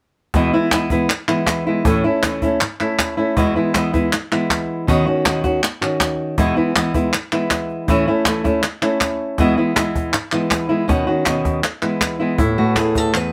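A straight 4/4 pulse at 160 BPM drives this fiery, proud flamenco passage, cut from a longer piece. From 0.3 seconds a snappy cajon with snares, played with soft hands in a small room, sets the beat, and crisp palmas hand claps, close, dry and up front, join at 0.7 seconds. The lead flamenco guitar carries the melody up front, fingerpicked on fresh strings and ranging from E2 to B4, over a proud E major cycle of E, A and Badd9 chords that finally settles on Asus2. At 12.4 seconds a second, very quiet fingerpicked flamenco guitar adds brief boxy stabs, with audible finger squeak. The band plays live together in one room under light reverb, giving the performance an immediate, intimate presence.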